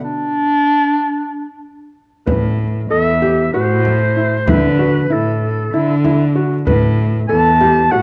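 A warm, breathy clarinet in a vintage jazz style opens alone before a felt-muted upright piano, a rich bowed cello and a hand-struck frame drum enter at 2.3 s, carrying this restless, hypnotic fragment of contemporary chamber music in A dorian through Amadd9, Dadd9 and Asus2 at 191 BPM in 7/8, all set in a recital-hall reverb and colored by the warbling pitch drift of worn cassette tape.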